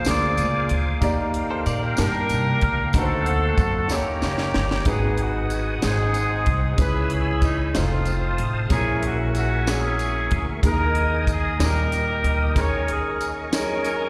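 A tight, up-front horn section with light vibrato carries the melody in this solemn, soulful slow gospel excerpt at 62 BPM in 6/8, with slapback echo on the horns and on the intimate grand piano, whose action noise is audible beneath its accompaniment. A woody, thumpy pizzicato upright bass and a dry funk kit with a high-tuned snare anchor the groove, while a reedy tonewheel organ holds sustained chords through chorus vibrato and a slow rotary speaker, a jingly tambourine sits in the background, and a clean, picked electric guitar with spring reverb and slapback echo adds a brief second line between 1.5 and 2.7 seconds. A drum fill at 3.9 seconds leads into a new section at 4.9 seconds, and the band sounds like a live gig heard through a venue's PA, with recital hall reverb.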